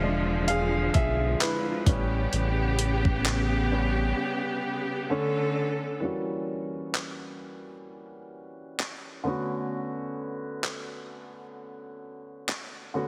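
Late-night and longing, this contemporary R&B fragment with a swung sixteenth feel opens on an intimate, clear grand piano solo with audible action noise over lush bowed strings and a round, deep analog bass, while a gritty, overdriven sampler-style drum kit of thumpy kick, hi-hat and handclaps enters at 0.5 seconds, and after a break from 4.2 seconds the piano carries on under a filter sweep from 6.0 seconds, the whole mix set in light reverb and a heavily compressed radio sound.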